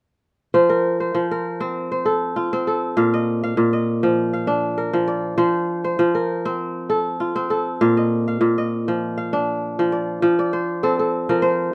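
West African traditional music in a flowing, hypnotic mood, heard in a short passage cut from a longer piece in a common four-beat metre with a light swing on the sixteenths. A solo kora carries everything here, playing ringing, fingerpicked arpeggios that span from low Bb2 up to F5. Its tone is crisp and acoustic, placed up front in the mix with a light reverb around it. The harmony rocks gently between F and Bb, giving the cycling patterns a steady, trance-like pull. At 10.2 seconds the music turns toward a new section, settling back on F before the passage ends at 11.7 seconds.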